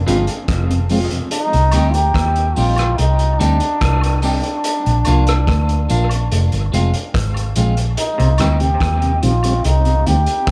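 Dub reggae at 72 BPM in C minor, meditative and hypnotic, cut from a longer piece and moving through Fm, Cm, Bb and back, opening on a break that lasts until 1.3 seconds. A distant, roomy trombone carries the melody with vibrato and dub echo over a dark, round, foam-muted bass sitting up front. A clean picked electric guitar with echo, a mellow tonewheel organ in the background with chorus vibrato and slow rotary speaker, and a very quiet, stringy clav fill in around them, while a vintage kit with punchy kick, hi-hat and rim click plays in a small pumping room with a rolled-off top, joined from 1.7 seconds by very quiet tambourine and woodblock in an echo-heavy mix with light reverb.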